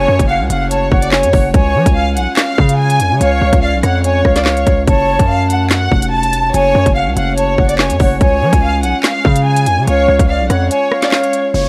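A half-time drill groove at 144 BPM drives this dark, menacing hip hop excerpt, with an up-front electronic kit of hard-clipped kick, woody snare, crisp hats, handclaps and rim clicks over a heavy, aggressive distorted 808-style bass moving through F#m and C#. A lush, bowed violin section carries the melody with smooth vibrato and digital delay, shadowed by a breathy concert flute on a second line, while a glassy, ethereal glass harmonica holds sustained chords in the background. A very quiet downlifter opens the first 1.5 seconds, a break arrives at 10.7 seconds, and vinyl crackle and light reverb colour the whole.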